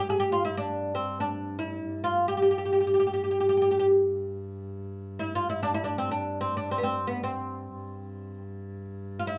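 A small, live-sounding room with a wet, short reverb surrounds this festive Turkish makam ensemble piece in free time, set in makam hicaz on G and cut from a longer work. Up front, a mellow, woody fretless oud carries the melody between B3 and Ab4, its plectrum-plucked double strings giving a deep, acoustic tone. Beneath it, a single bowed double bass holds a warm, earthy drone on G2 with light vibrato and a smooth top for the full 9.4 seconds.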